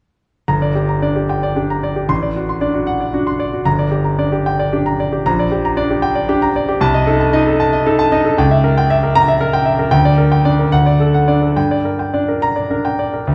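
Passionate and agitated, this classical virtuoso piano study unfolds in 6/8 with free rubato, carried by a solo concert grand heard from 0.5 to 13.3 seconds. The piano sounds up front, smooth and vintage, with a deep bass and short sustain, spanning from low G1 up to C6, while a wet recital hall reverb surrounds it. Its harmony darkens through diminished chords before settling back on G minor near 11.6 seconds, in what is cut from a longer piece.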